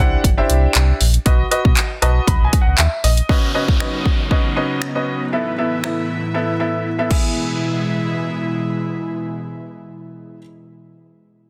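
Set in a straight 4/4 pulse, this upbeat, summery dance-pop piece opens on a drop where an up-front house kit with a punchy kick, hi-hat, crash, snaps and claps sits over a deep sine sub bass that stops at 3.2 seconds, while a present baby grand piano, pumping against the sidechain, plays a fill before an airy, detuned pad with chorus and an electronic downlifter enter at 3.3 seconds, with a brief silent gap at 6.9 seconds inside a dense, dry, heavily limited mix.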